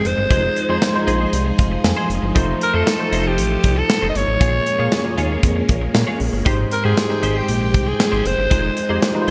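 Over a straight 4/4 groove from an up-front, tight-kicked studio drum kit with gated reverb, this nostalgic, uplifting 1980s-style pop excerpt sets a breathy, raspy alto saxophone melody against a worn, slightly out-of-tune tine electric piano through analog chorus (with a fill at 1.3 seconds), a glossy synth bass entering at 0.1 seconds, a swirling phased string machine holding chords in the background, and a twangy twelve-string electric guitar riff with digital delay joining at 0.2 seconds, the chords moving from Fm7 through F7, Bbm7 and Abmaj7 within a moderate plate reverb and bright digital production.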